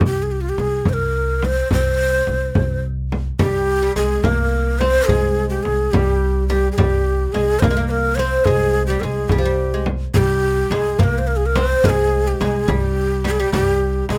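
A 6/8 pulse from a close frame drum and a thumpy, gut-strung pizzicato upright bass, the bass sitting up front, anchors this soulful, melancholic Arabic maqam ensemble piece, cut from a longer performance. Over it a breathy, end-blown reed ney carries the melody with vibrato, a crisp attack and an unsteady, close-miked tone, joined at 3.4 seconds by a quieter second line on a woody, fretless, plectrum-plucked oud with double strings. A large, deep metal-shell darbuka slips in very quietly at 10.2 seconds, and the overall sound is dry, with little reverb.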